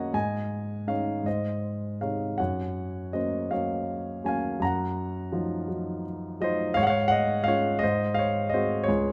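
Peaceful and calm, this lyrical classical passage for solo piano is cut from a longer piece and lasts just over nine seconds. A warm grand piano carries it alone from start to finish, ranging from Db2 up to Bb5 in 6/8 with uneven beats and free rubato. The instrument sits up front and sounds intimate, with short sustain and audible action noise that bring the listener close to the keys. The harmony drifts from Absus4 to Ab, through Gb and Ebmadd9/Gb, then settles on Db/Ab before arriving at Ab7 at 7.8 seconds. Close, detailed microphones and a light reverb keep the sound clear and unhurried.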